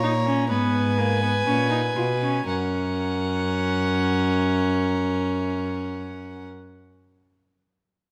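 Joyful and elegant, this short cut from a longer piece is a baroque-style fugue for string quartet, played in period style on gut strings, with a slowing in the opening 2.5 seconds before it settles onto a new chord. A distant first violin carries the melody with light vibrato and a dark, nasal edge, while a close second violin with an airy bow traces the second line and a warm, reedy viola supplies accompaniment. Beneath them an up-front cello with a smooth top holds the bass, all four bowed instruments sounding together in a recital hall's moderate reverb.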